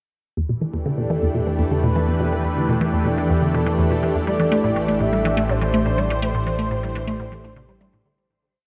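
This is ambient, sequencer-driven space music in A minor at 123 BPM in a straight 4/4, with a cosmic, mysterious mood across its brief span. A squelchy, resonant blip pluck with a fast attack and short decay plays a repeating seven-step loop that drifts against the bar, its filter pluck lending a juicy bite softened by chorus and delay. Over it, a lush unison pad of thick, detuned sawtooth voices holds slowly shifting chords, moving from Em7 to Am. This pad sits bright and up front, coloured by phaser and shimmer reverb. Beneath, an analog drone from 1.0 s sustains a dark, warbling root bass with pulse-width modulation and a long release. At 4.3 s an expressive portamento lead enters with a smooth, free melody full of vibrato, wrapped in analog chorus, shimmer reverb and delay, while a huge, wet ambient reverb hangs over the piece as it fades out from 5.6 s.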